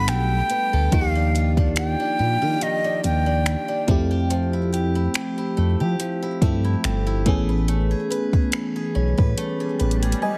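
Heavily compressed with a radio-like sound, light reverb and a digital ambience, this short piece cut from a longer contemporary R&B track moves at a slow 71 BPM in 4/4 with a gentle swing on the sixteenths, and its mood is tender and smooth. A breathy, close-miked concert flute carries the melody up front with a straight tone and soft attack, trailed by digital delay, and drops out at 3.8 seconds. Beneath it, an FM electric piano with a glassy, bell-like attack and chorus supplies the harmony, while a picked acoustic archtop guitar with a boxy character adds delayed arpeggios. A dark, gliding synth bass with portamento and a sustained sawtooth and square-wave tone sits up front alongside a produced electronic drum kit of soft kick, metallic hi-hats and finger snaps. The chords move from Gmaj9 through Ebmaj9 and Fmaj9 to Amaj9, and an electronic swell rises in the background from 8.9 seconds.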